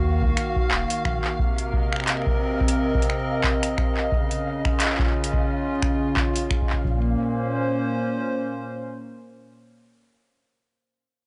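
Melancholic and glitchy, this IDM excerpt moves at 88 BPM in Bb minor with a light swing on the 16ths, built on a hollow, flute-like pad that sustains chords from Ebmadd9 through Cm7 and Dbadd9 to Bbmadd9, colored by chorus and vintage 12-bit sampler grit. A round sine sub bass sits beneath, a granular texture flickers in the background with its own reverb, and up front a deep, tape-warm electronic kick drum joins a booming analog drum machine that supplies finger snaps, handclaps and metallic hi-hats. The drum machine falls away at 6.8 s and the kick at 7.0 s as the sub bass briefly returns under the pad, and the whole take has a dry, gritty cassette sound with a top end that stops at 10.9 kHz.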